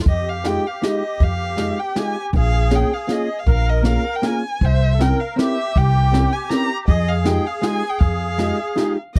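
A dry, close studio sound in a 1970s style frames this short cut from a longer musette waltz, bittersweet and whirling in its straight three-beat sway. A dark bowed violin carries the melody high up, singing with vibrato, soft attacks and portamento, its top end smooth and expressive. Beneath it, a reedy musette accordion plays a second line with a shimmering, vintage, band-limited tone, while a picked archtop guitar, boxy and woody with old strings, sits up front in the accompaniment. The pizzicato upright bass on gut strings gives a thumpy foundation until it stops at 8.5 seconds. A brushed jazz kit with punchy kick, medium-tuned snare, hi-hat and dusky crash adds an airy, polished small-room touch as the harmony moves from Fm9 through Bbm7 and C7b9 back to Fm9.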